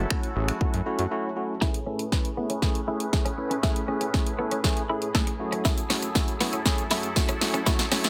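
Dance-pop at 119 BPM in A major, this upbeat, euphoric snippet from a longer piece opens on an F#m7 chord with a clean tine electric piano and a detuned sawtooth supersaw swell, both pumping under sidechain and softened by a low-pass filter. A fat, thick analog bass with a fast-attack filter pluck anchors the opening until 1.1 s, then drops out for a short break. At 1.6 s the harmony moves to Amaj7 and a build-up begins, carried by a filter sweep and a drum fill that runs to the end, as a compressed, picked twelve-string electric guitar enters with a gently chorused riff. The layered house kit sits up front with a punchy kick and snare, trimmed by hi-hat, shaker and finger snaps. A jingly, band-limited tambourine slips in very quietly near the close as the chords return to F#m7, all set in a digital ambience.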